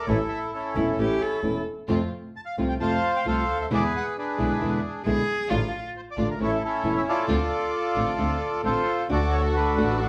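Dramatic and melancholic, this tango in D minor moves at 133 BPM in 4/4 with a rubato feel, and it is cut from a longer piece. A reedy, mid-forward bandoneon carries the melody up front, while a small, thumb-plucked nylon-string guitar supplies accompaniment and a clear, biting double bass, bowed with vibrato and a smooth top, anchors the low end. A cello, played sul tasto with light vibrato, a soft attack and an airy bow, adds an intimate second line in two brief appearances, first at 0.8 seconds and again at 5.1 seconds. From 1.9 seconds a lush, even string section enters with bowed stabs that sit in the background. The harmony moves through A, F, E7, Dm/A, A, Dm7 and D, and the group plays live in one room with a moderate large studio reverb.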